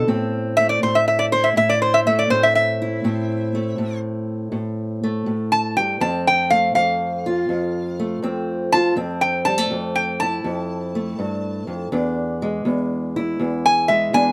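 A metallic, nasal lap resonator guitar, played up front with fingerpicks and a steel bar, carries the melody through this smoky, brooding acoustic country blues at 81 BPM in swung 4/4, while a woody, boxy parlour steel-string guitar with old strings fingerpicks the accompaniment over Am, Fmaj7 and E7 in A minor, all set in a moderate booth ambience and cut from a longer piece.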